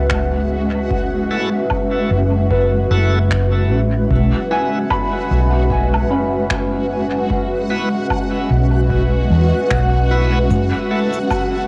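A cloudy, detuned granular pad sits up front, holding blurred, full-bodied chords that slowly evolve through built-in and plate reverb. This meditative, hazy slice of ambient dub moves at 75 BPM in 4/4 with a swung sixteenth feel, cut from a longer piece and resting on F#m7 before shifting to Bsus4 at 4.1 seconds and returning at 10.5 seconds. A round, amped hollow-body electric bass anchors the low end up front, joined by a deep, tape-warm analog kick and a dark, rolled-off blend of finger snaps, woodblock and cabasa trailing dub echo. A bright, shouting tonewheel organ adds lightly overdriven stabs through a slow rotary speaker, echo and plate reverb, while a felt-muted upright piano enters at 2.5 seconds with boxy, intimate arpeggios, its action noise audible beneath tape echo. Underneath everything drifts a reversed, dreamy swelling texture, and the whole cassette home recording carries a moderate booth ambience.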